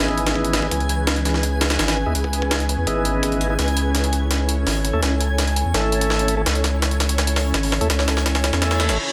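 Drum and bass with a jungle edge, this dark, raw build-up is cut from a longer piece and rides a gritty, pitched-up breakbeat kit with a thumpy kick and high-tuned snare up front, laid over a deep, thick saturated sub bass. Clean tonewheel organ stabs with key click turn through a slow rotary speaker and dub echo over C#m7 then A, while a dreamy, detuned backwards texture sits granular and reversed in the background. A drum fill runs from 3.6 seconds, and an electronic reverse cymbal arrives at 8.8 seconds to close the passage.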